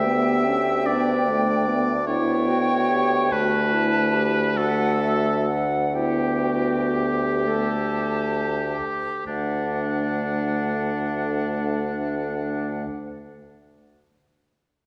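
From the opening moment a wind quintet plays together in a serene, rubato classical slow movement in 12/8: the airy silver flute carries the vibrato-rich melody above a clear, up-front oboe second line, while a mellow, distant French horn and a roomy clarinet in the background supply accompaniment over a soft-attacked bassoon holding a low D. The music slows through its first 9.3 seconds over G/D and A5/D harmonies before settling on D in the next section, and the ensemble is heard from further back in a reverberant concert hall in this fragment cut from a longer piece.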